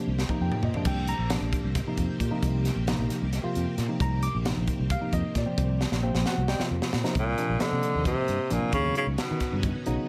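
A moderate club reverb gives this nocturnal, funky electric jazz fusion excerpt a close, lively room, with a crisp drum kit and bright tenor saxophone set up front. Moving in 7/8 at 267 BPM counted in eighths with a straight feel, the piece sits in C minor, opening on a Cm9 chord and shifting to Eb7alt at 8.7 seconds. A worn, slightly out-of-tune tine electric piano plays clean accompaniment through built-in speakers, adding short fills, while a lush sawtooth string machine with a sub octave and ensemble chorus holds slow-attack chords in the background. A growly, amped fretless electric bass anchors the low end, and the drum kit, saturated and gritty with a punchy kick, high-tuned snare and pumping small-room sound, works crash, hi-hat, snare, kick and toms, with a fill running from 5.8 to 7.2 seconds. The tenor saxophone enters at 7.2 seconds for a soft-attack jazz solo with vibrato, its tone trailed by tape echo, before the passage is cut off.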